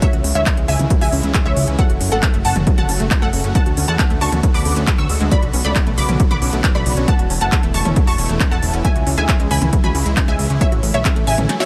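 A bright, detuned unison pluck carries the melody with ensemble chorus, delay and sidechain pumping over a softer pluck arpeggio, a punchy up-front electronic kick and a techno kit of handclaps, smooth hi-hats, snare and toms, while a lush supersaw pad and a fat, thick analog bass with filter sweeps pump beneath it all in this bittersweet, emotional uplifting trance excerpt at 136 BPM, moving from C#m through F#m, D6, Bm and Esus4 before the kick drops out at 11.5 seconds for a drum fill, all heard through a digital ambience with lossy compression artefacts.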